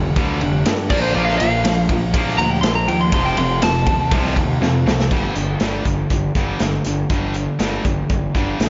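Up front in the mix, a gritty, boomy garage drum kit with dark cymbals drives this aggressive hard rock fragment alongside a punchy fuzz bass and two tight distorted rhythm guitars playing a riff, one in the background and a very quiet one that drops out at 5.1 seconds, while a twangy, slightly broken-up lead guitar with slapback echo plays a melody from 0.9 to 4.1 seconds and a drum fill at 4.6 seconds sets up the next section, all inside a lush hall reverb with a big arena sound.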